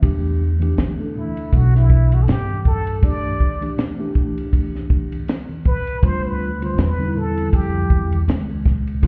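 Swung sixteenths in 4/4 drive this cool, smoky jazz-hop fragment, set by a compact cocktail drum kit with a punchy kick, a high-tuned snare and dark cymbals, alongside a woody pizzicato upright bass, both up front, and a faint, distant tube shaker and congas. A mellow, clean tine electric piano comps softly through its built-in speakers. From 1.2 seconds a plunger-muted trumpet carries a breathy, wah-wah solo with vibrato, slapback echo and a smooth top, while a break arrives at 3.0 seconds and the whole mix sounds muffled through a wall in a club-like reverb.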